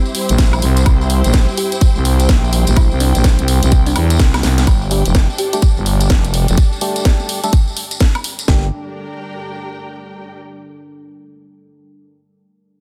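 A growling, overdriven FM bass drives this aggressive, bouncy bass house excerpt, pumping under tight-kicked, cracking-snared garage drums with a jingly tambourine, while a deep, moody pad and distant, vibrato-rich strings sit behind, a tine-like pluck with dub echo appears from 1.6 to 5.6 seconds, and hollow, nasal organ stabs enter at 4.9 seconds in a dense, heavily limited mix.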